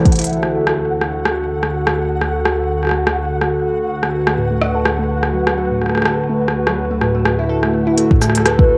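A home-recorded cassette sound, tape-warm and softened by a moderate spring reverb with digital ambience, frames this short, glitchy and melancholic IDM excerpt at 125 BPM in 4/4 with a light 16th-note swing, tuned slightly flat to A4 = 439 Hz and centred on a D chord. A hollow, flute-like pad holds dark sustained chords from C2 to B4 throughout, carrying chorus, 12-bit sampler grit and sidechain pumping up front in the mix. An organic electronic drum kit of smooth hi-hats, rim clicks and shaker runs from 0.1 s, re-recorded in a small room and sitting close, while a deep electronic kick appears briefly alongside a drum fill at 0.1 s and returns near the end. A flickering, grainy granular texture sits quietly high above, and a harp-like synth pluck with phaser and analog delay spins ringing, mellow arpeggios from A2 to A4, returning at 4.3 s. A warbling, nostalgic lead with vibrato and tape echo touches a B4 only at the very start and again in the closing moments.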